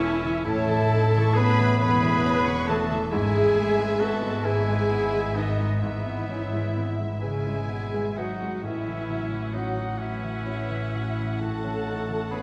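Moving and uplifting, this short cut from a longer cinematic film score unfolds in 6/8 with uneven, rubato beats. A muted violin section carries the melody with a veiled, lush tone, soft attack and vibrato, while a bright solo oboe, a second con sordino violin section in the background and a small, pure-toned flute group, distant and very quiet, add second lines. A clear concert grand piano with short sustain and a dark viola section, both in the background, fill in the accompaniment, as a dark French horn section holds soft-attack chords from a roomy distance. A concert harp plays ringing, fingerpicked arpeggios very quietly, and the bass is bowed by a close double bass section and a cello section with light vibrato. The harmony moves from A to E/G# at 3.1 seconds and to F#m7/A at 8.6 seconds, all bathed in a wet concert hall reverb.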